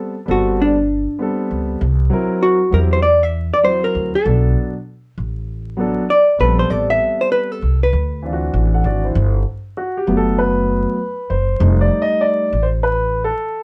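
A clean, dark hollow-body electric jazz guitar carries the melody up front until 8.4 s in this cool, smooth, swung hip hop excerpt, with a mellow, long-sustaining vintage baby grand piano taking the spotlight from 9.2 s and a woody, pizzicato upright bass underneath, all sounding like a band playing live in one room with moderate studio reverb and a layer of vinyl crackle over jazzy chords such as Am9, C7#11 and Gmaj7.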